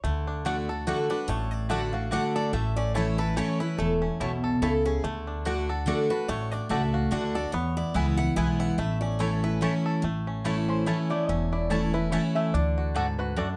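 Bluegrass in a swung three-four lilt, rustic and driving, with a twangy fingerpicked banjo carrying the melody over a full-bodied dreadnought guitar accompaniment, thumpy gut-string upright bass and woody double-string mandolin stabs, while a second, up-front picked acoustic guitar sings its own melody until 9.8 s and a nasal, metallic lap resonator guitar takes a slide solo from 10.7 s, all captured by close, detailed microphones in light reverb.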